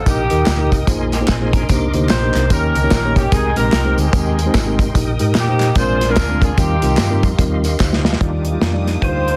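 Uptempo gospel with a jubilant, uplifting swing, this short cut from a longer piece is led by a clear, punchy horn section carrying the melody. A reedy tonewheel organ sits in the background with sustained chords, its fast rotary speaker, light overdrive, chorus vibrato and key click adding shimmer, while a mellow tine electric piano fills out the accompaniment. Underneath, a round, amped hollow-body electric bass pairs with a dark, small-room acoustic drum kit with a snug kick and rolled-off top, plus a band-limited, vintage-sounding layer of egg shaker and group handclaps. A clean, compressed, picked electric guitar slips in briefly at 1.1 seconds, and a drum fill at 7.8 seconds leads into a new section where an expressive string section with gliding portamento enters softly at 8.2 seconds, joined in the closing moments by a distant alto saxophone with a breathy subtone. The mix is dry, with a dense, heavily limited modern master.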